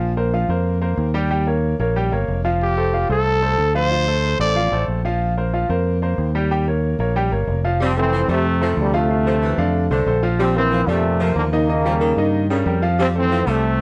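Heard through light reverb and cassette-tape grain, this festive, joyful latin excerpt sets a clear concert grand piano with audible action noise and plate reverb over a round, dark fingered electric bass, while a growling, raspy trumpet carries the melody from 2.6 to 4.9 s before a punchy, bright trombone section takes the melody at 7.8 s beside a close-miked saxophone section with plate reverb on a second line.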